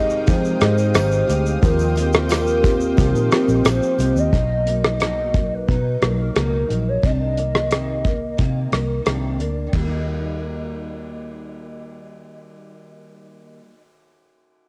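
A straight 4/4 groove at 89 BPM in Eb major sets up this sunny, hazy bedroom-pop excerpt, with a dry, up-front 70s drum kit of tight kick, hi-hat, ride, rim click and shaker, a faint jingly tambourine until 4.3 seconds, and a round, foam-muted electric bass with tube saturation. A full-bodied picked dreadnought acoustic guitar with ensemble chorus and vibrato runs throughout, while a barky, lightly overdriven tine electric piano and a lush, thick sawtooth unison pad carry the opening Fm9 and Eb69 chords before dropping out at 4.3 seconds. Over it, a hollow, woody clarinet-like synth lead carries the melody through cassette tape, tape echo and analog chorus until 9.1 seconds, as the harmony moves through Bmaj7 and Cm9 to rest on Eb, all captured close and dry on a cassette home recording.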